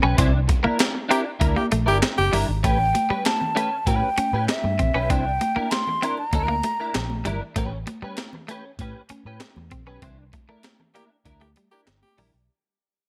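Funk at a straight, playful pace with a gritty edge, cut from a longer piece that fades throughout, built on a thumpy, compressed breakbeat kit of kick, snare, hi-hat and handclaps, a dark, round, foam-muted fingered bass, and two clean picked electric guitars, one a bright, twangy tremolo riff and the other an ensemble-chorused accompaniment, over C9 and A9 chords. A breathy, scooped tenor saxophone plays a brief second line from 1.1 to 2.4 seconds and again near the end, while a mellow, hollow concert flute with vibrato carries the melody from 2.6 to 7.2 seconds. High-tuned congas sit in the background from 2.6 seconds, with band accents near the start and close.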